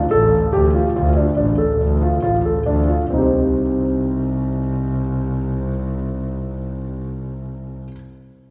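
A close, bowed double bass carries the bass line in this restless, urgent contemporary instrumental: one player with a rich, biting, intense tone, vibrato and an airy bow sound, placed up front. Beside it, an intimate grand piano plays natural-sounding arpeggios with audible action noise, and both sit in a wet concert hall reverb at 136 BPM in 5/4 and C dorian. The opening slows over a Dm chord through the first 3.1 seconds before the harmony moves to Cm, in this fragment cut from a longer piece.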